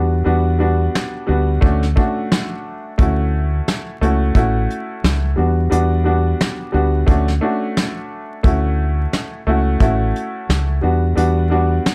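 Confident and nostalgic, this fragment of boom-bap hip-hop in a swung 4/4 opens with a woody, slightly detuned upright piano with short sustain, filtered and set in plate reverb, moving between Em7 and Dmaj7 over a round, deep dub fingered electric bass. A soft brush kit with a fat snare and tight kick enters at 1.0 s, during the opening break. Piano, bass and drums all sit up front in a dark, warm production laced with vinyl crackle and light reverb.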